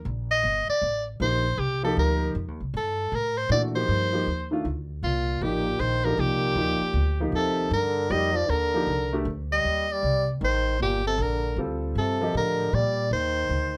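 Light reverb surrounds this short cut from a longer modal jazz piece in C dorian: a spiritual, searching tune at 156 BPM in 3/4 with swung eighths, resting on a single Cm9 chord. Up front, a woody, thumpy pizzicato upright bass opens the piece, and a clear soprano saxophone carries the melody with light vibrato, subtone and scooped notes. A warm concert grand piano with audible action noise accompanies from 1.2 seconds until 9.3 seconds before a brief return, while a breathy, punchy trombone joins at 5.0 seconds with a vibrato-tinged second line.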